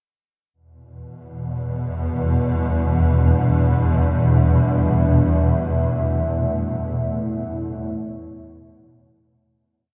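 Dark and unsettling, this short dark ambient drone piece opens at 1.4 s with a swarming, tense low drone, detuned and ring-modulated with a granular, evolving texture that sits up front. At 2.6 s a deep, moody pad fades in behind it with chorused, sub-octave sawtooth chords, moving from Em7 to A at 5.1 s as the piece begins fading out. Both parts hang in a vast, echoing cathedral reverb.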